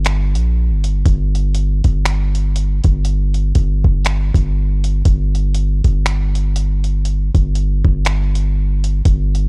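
A deep, sine-toned 808-style bass sits up front with long, decaying notes between G1 and Bb1, while a gritty, compressed soul sampler-style drum kit of thumpy kick, hi-hat and finger snaps keeps a slow, swung 60 BPM pulse in 4/4, giving this dark, dry contemporary R&B cut in G minor a moody, longing feel.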